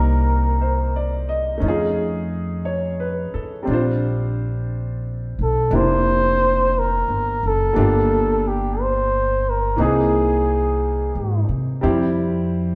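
Tender and late-night, this swung jazz ballad, cut from a longer piece, sets a mellow flugelhorn singing the melody with vibrato and a smooth top until it falls silent at 11.5 s, over a clear, vintage-toned grand piano with short sustain and a woody pizzicato upright bass on steel strings, all three up front as a band playing live together in a reverberant stone room.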